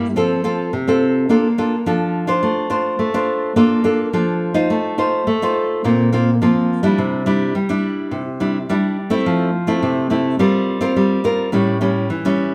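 Awash in a large studio's reverb yet sitting up front, this bittersweet, yearning samba fragment features a fingerpicked classical nylon-string guitar playing solo throughout, its fresh strings giving a warm tone and a finger squeak audible as it moves through chords from F and Bbmaj7 to a closing A7.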